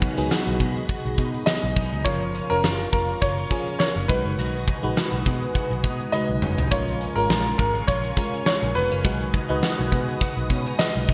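At 103 BPM with a light sixteenth-note swing, a clear, slightly worn concert grand piano carries a nostalgic, romantic melody over a glassy, bell-like FM electric piano and a huge arena drum kit with a fat snare, punchy kick and gated reverb, all in a bright 1980s-style pop production washed in lush hall reverb. Beneath them, a dark, round, foam-muted picked bass holds the low end, while a compressed clean electric guitar riff with chorus and digital delay and a swirling, detuned sawtooth pad sit further back. The chords move between B6, F#maj7 and A#m7, and a drum fill at 6.1 seconds leads into the A#m7 chord in this excerpt from a longer piece.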